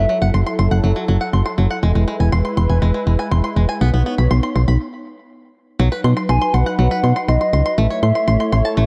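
From the first beat, a punchy, round FM bass sits up front beneath twangy bluegrass banjo arpeggios played with fingerpicks and treated with tape echo, along with a sweeping, detuned sawtooth pad with subtle chorus, while a hollow, woody clarinet-like synth lead with chorus and tape echo sounds briefly before returning at 6.3 seconds, in a driving yet melancholic 121 BPM pop groove that moves from F#m7 through E and Badd9, halts for a stop at 4.8 seconds, and then turns to B and A in a dark production with light digital reverb.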